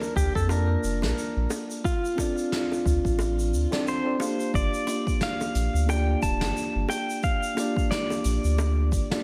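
Relaxed and wistful, this sunset chillout excerpt moves at 89 BPM in G minor with a gentle 16th-note swing, drifting from Bbmaj7 through Dm7 to Gm7. An up-front, twangy pedal steel guitar carries the melody with slide and volume swells, touched by digital delay and slapback echo. Beneath it sit a mellow tine electric piano, a soft brush kit on hi-hat, shaker and snare, and tight, high-tuned bongos with their own slapback echo in the background, while from 0.2 s a round, dark analog bass with a filter sweep and a deep, overdriven electronic kick anchor the low end, the mix carrying a moderate recital hall reverb and a big arena sound.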